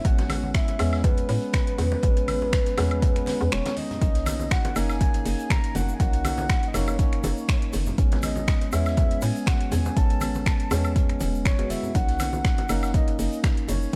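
Deep house at 121 BPM with a soulful, relaxed swing, this excerpt pairs a breathy, flute-like synth lead carrying the melody through lush chorus and digital delay with bright tine electric piano stabs and a hollow, knocking FM bass that both pump against an up-front, overdriven kick, while finger snaps, metallic hats and woodblock, a distant soft-mallet kit, ringing hard-hand congas from 0.2 seconds and a grainy egg shaker entering at 4.0 seconds after a brief break fill out a dark, warm small-room mix moving between Amaj9 and Bmaj9.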